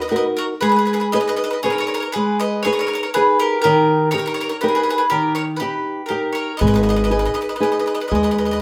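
Wistful and romantic, this short excerpt of an Italian folk serenade moves in a rubato 3/4 at 120 BPM in G# harmonic minor, with chords shifting from Ebm to G#m, D# and back to G#m. Two bright, picked bowl-back mandolins with double strings carry the melody and a softer second line, the lead sitting up front, over a boxy, fingerpicked nylon-string guitar that sounds small and close. At 6.6 seconds a woody, thumpy pizzicato upright bass joins, and the whole band plays live together in a large studio room with moderate reverb.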